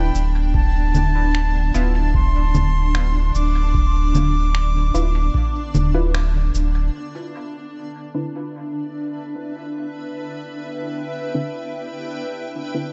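Ambient dub at 75 BPM in a hazy, spacious mood, where a bright, reedy flute with vibrato carries the melody through dub echo until 6.1 s over a blurred, evolving granular cloud pad and muted, chorused sawtooth chord stabs that take a filter sweep from 6.9 s, while a round, up-front sine sub bass, a deep analog kick and muffled, tape-toned cabasa, congas and finger snaps drive the first half of this echo-heavy, dark-topped excerpt, with a band accent at 6.1 s and chords moving from Cmaj9/D to Dm69 and back.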